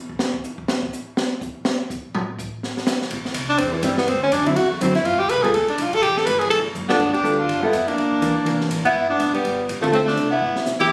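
Small-group swing-and-bop jazz, swinging and sophisticated, this piece opens on a drum solo from an acoustic kit with a high-tuned snare and boomy kick, before a woody, growly pizzicato upright bass enters at 3.1 seconds, a clear, up-front tenor saxophone with vibrato and subtone takes the lead over a dark, clean hollow-body electric guitar, and a bright alto saxophone with scooped notes adds a second line from 6.9 seconds, all captured on a phone in the room with moderate studio reverb.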